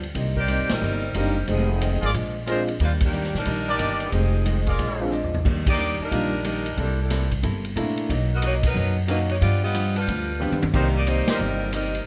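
Brassy and joyful, this swinging big band excerpt sets a bright saxophone section on the melody over woody pizzicato upright bass, a dark, clean archtop guitar and a polished drum kit with dark cymbals and punchy kick, while a concert grand piano with audible action noise joins at 1.2 seconds, a trumpet section adds soft-attack stabs from 2.0 seconds, and drum fills and band accents punctuate the two phrases in a large studio reverb.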